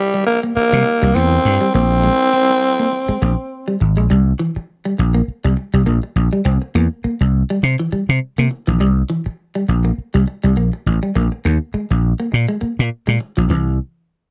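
A raspy, gritty alto saxophone carries the melody up front with plate reverb for the first 3.8 seconds of this strutting funk excerpt in C mixolydian at 102 BPM with a light 16th-note swing, while a growly, punchy vintage slap bass holds down the low end and a bright, twangy clean electric guitar riff colored by analog chorus sits further back, all within a dark production touched by light reverb.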